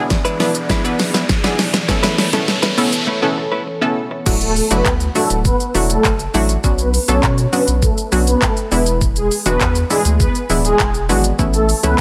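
Opening on a punchy, detuned sawtooth chord stab, a dark glassy FM pad in the background, a riser and a picked clean electric guitar riff over a drum fill, this carefree, summery dance-pop cut in D major at 101 BPM builds to a short break at 3.1 seconds before dropping at 4.3 seconds into pumping sidechained stabs, a round sine sub bass, a mellow evolving supersaw melody with a moving notch filter, and an up-front electronic pop kit with knocking kick, fat snare, crisp hats, handclaps, shaker and crash, all over chords moving from Dadd9 through Bmadd9 and E7 to Aadd9 in light reverb.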